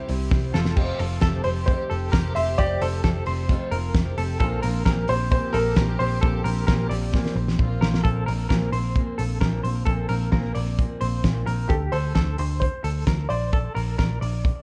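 Soaked in the warble and pitch drift of a worn old cassette, with light reverb, this brief excerpt of jangly indie pop moves at 132 BPM in a bittersweet, restless mood. A loose drum kit with a fat snare and a round, foam-muted bass sit up front, under a fingerpicked steel-string acoustic guitar, bright clean arpeggios from a semi-hollow electric guitar treated with tremolo and digital delay, and a reedy violin section in the background that drops out at 8.0 seconds. A woody upright piano, its action noise audible, carries the melody from 1.4 seconds, pauses, and returns at 11.7 seconds over chords moving from C and F to Bbsus2 and later D5.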